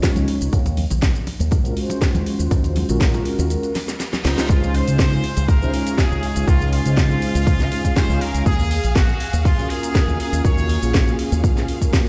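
A punchy, up-front electronic kick drives this cosmic, groovy nu-disco cut, layered with a house kit of cracking snare, metallic hi-hats and shaker, while a round, dark fingered bass with an envelope filter pumps beneath a detuned sawtooth synth brass coloured by chorus, cassette tape and tape echo. Thick-skinned congas sit in the background until a break, where a drum fill and a reverse cymbal lead into the drop at 4.5 seconds. Just before it, a nasal, straight-muted trumpet section enters to carry the melody through dub echo, joined at the drop by lush, bowed symphonic violins, all heard in the stony reverb of a bare room played through a big sound system.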